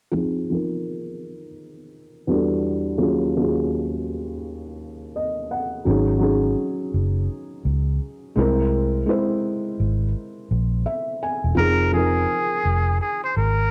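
Swung sixteenths at 84 BPM in 4/4 carry this nostalgic, melancholic lo-fi hip hop excerpt, where a soft, intimate felt-muted upright piano with audible action noise, a filter sweep and short fills moves through Fm7, Em11, Ebm11, Ab7sus4 and C7b13, a round, foam-muted electric bass enters up front at 5.9 seconds, and a nasal, breathy straight-muted trumpet with vibrato takes a brief jazz solo from 11.6 seconds, the piano and trumpet both coloured by cassette tape and low-pass filtering within a light reverb and a home-cassette sound.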